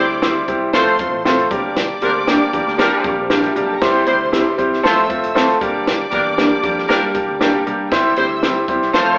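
A clear baby grand piano sits up front in this driving, passionate slice of 1960s-style soul, its intimate tone carrying audible action noise and a long sustain as it lays down the accompaniment over a steady straight four. Behind it, a distant, roomy horn section with light vibrato and a lush, bowed string section with soft attacks share the second line, the strings sitting close yet tucked into the background. An electric guitar through a small old amp adds dark, slightly broken-up picked stabs from 0.2 seconds, while a bright, punchy fingered bass holds the low end. A compact cocktail drum kit with a high-tuned snare and punchy kick drives the groove alongside very quiet, low-tuned congas. The band sounds as if playing live in one room, bathed in a wet large studio reverb and filtered through an AM radio sound, with the harmony cycling through C, F and G minor across this short section cut from a longer piece.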